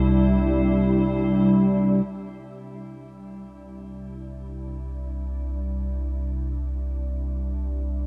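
Peaceful and serene, this ambient fragment drifts in free time on a C major chord, tuned to A4 = 437 Hz. A bright, twangy pedal steel guitar offers a brief sliding melody with volume swells, haloed by shimmer reverb and tape echo, before stopping at 1.5 seconds. Meanwhile an up-front, glassy FM pad holds ethereal sustained chords through ensemble chorus and a filter sweep lasting until 2.1 seconds, while a dark, rumbling drone anchors the bass for the full 8.1 seconds, all captured on cassette tape with light reverb and a digital ambience.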